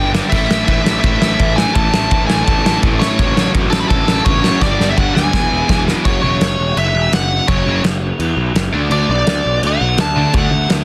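Dry and dense with a heavily limited modern master, this rowdy, rebellious punk rock excerpt charges along at 168 BPM in a straight 4/4, led up front by a nasal, dark lead guitar with a parked wah, overdrive and delay, alongside a growly, fuzzed picked bass. Behind them a sludgy overdriven guitar and a bright, tight distorted guitar carry the riff, while a very quiet double-tracked tight guitar adds its own riff until 6.0 s. A loose indie kit with a punchy kick, dark cymbals and a pumping room plays a fill from 4.6 s before the band drops into half time over F#5 and D.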